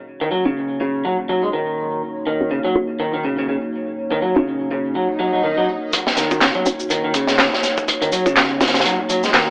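Breakbeat in Eb minor at 123 BPM with a 16th-note swing, this funky, swaggering excerpt opens on a deep, moody analog pad sustaining an Ebm7 chord with lush chorus and sidechain pumping. Moments later it is joined by a bright, twangy, slightly broken-up guitar riff through a small old amp with tape echo, and then by a muted, full-bodied dub chord stab sitting in the background under phaser and ensemble chorus. An electronic swell arrives at 5.1 seconds before a crunchy, saturated breakbeat kit with a tight kick and medium-tuned snare lands up front at 5.9 seconds alongside layered electronic shaker and handclaps, as a filter sweep on the stab runs through a build-up. The whole thing has a dry, gritty hardware character with an AM-radio tint and a small room's moderate reverb.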